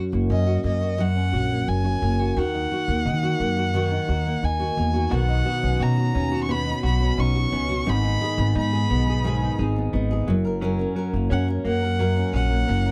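A dry, close 1970s-style studio sound frames this heartfelt, easy-going acoustic pop excerpt at 87 BPM in straight 4/4, where a double-tracked, full-bodied fingerpicked nylon-string guitar with audible finger squeak and a woody, dark pizzicato upright bass sit up front beneath a rich, focused bowed violin melody with vibrato, joined at 5.1 seconds by warm, compressed picked arpeggios from a clean, direct-recorded electric guitar over chords moving from F# through D#m, Badd9 and G#m back to F#.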